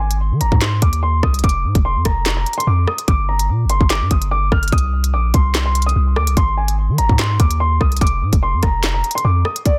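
Dark and cold, this short drill cut from a longer hip hop piece moves at 146 BPM in 4/4 with a half-time feel. A mellow, vintage grand piano carries the melody between D5 and F6, its intimate tone softened by a low-pass filter and tape echo, with audible action noise. Underneath, a deep 808-style bass holds long sine notes with a fast attack that decay, sitting up front from F1 to Eb3 and stopping at 9.4 seconds. The electronic drill kit enters at 0.1 seconds with a hard-clipped kick, a woody snare pushed by soft clipping, crisp hi-hats, rim clicks and handclaps, all placed up front. The harmony moves through Ab, G5 and Cm with chordless stretches between, set in a digital ambience with a dense, heavily limited modern master.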